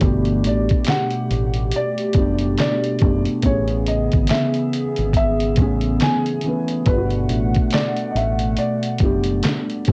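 A muffled, pitched-down sampler-style drum kit sits up front in this cosy, nostalgic lo-fi hip hop excerpt, its thumpy kick, fat snare, handclaps and hi-hat compressed, re-recorded in a small room and run through cassette tape. The groove moves at 70 BPM in 4/4 with a lazy 16th-note swing, and a deep, round dub bass, fingered and also up front, anchors the low end in G major. A felt-muted upright piano with thick felt and audible action noise supplies soft, intimate accompaniment, softened by cassette tape, a low-pass filter and plate reverb. Beneath it, a hollow, flute-like pad with a gentle attack and long release holds sustained chords through chorus, filtering and tape. From 0.5 s a second, woody upright piano with a vintage tone and short sustain carries the melody, set back in the mix with tape echo and plate reverb over a Gmaj9, Amaj9, Gmaj9 progression. The whole excerpt has the close, homespun feel of a cassette recording made in a small booth.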